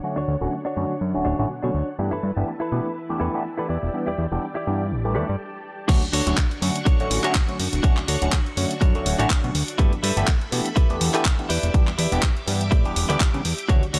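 Sunny and funky, this excerpt from a longer filtered disco house track moves at 123 BPM in 4/4 with a light 16th-note swing, set in D major and built on chords such as Dmaj7, G69, Em7 and A7sus4. From the start, a barky, overdriven tine electric piano played through a combo amp carries the accompaniment with phaser, while a lush vintage string machine holds sustained chords with ensemble chorus and a slow attack. A twangy, clean, direct-recorded electric guitar riff and a fat, saturated analog bass with a filter pluck join at 0.2 seconds, the bass sitting up front. All four share sidechain pumping and a low-pass filter sweep through the opening, with a brief break from 5.4 seconds. At the drop at 5.9 seconds, a punchy, tape-warm electronic kick arrives up front alongside a house kit of hi-hat, handclaps and crash cymbal, the hats and cymbals also pumping and filtered, all set in a roomy digital ambience.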